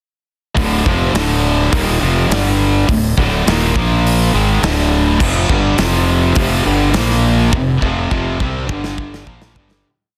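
A dense, heavily limited modern master with moderate studio reverb gives this short hard rock piece a loud, compact sound and a menacing, aggressive mood. It moves at 103 BPM in a straight 4/4 in D minor, with a power-chord riff running from 0.6 seconds to the end. A bright, distorted high-gain guitar starts the riff at 0.5 seconds, joined by a second overdriven electric guitar, both picked and sitting in the same low register. Up front, a warm fingered electric bass with fuzz and overdrive drives steady eighth notes that double the guitar riff. An acoustic rock drum kit with a punchy kick, medium-tuned snare, hi-hat and crash lays down a big groove. The chords move through Dm, G5, D5, Bb5 and F5 before resting on Gm7, as a drum fill and a fade-out begin at 7.5 seconds and carry the piece to its close.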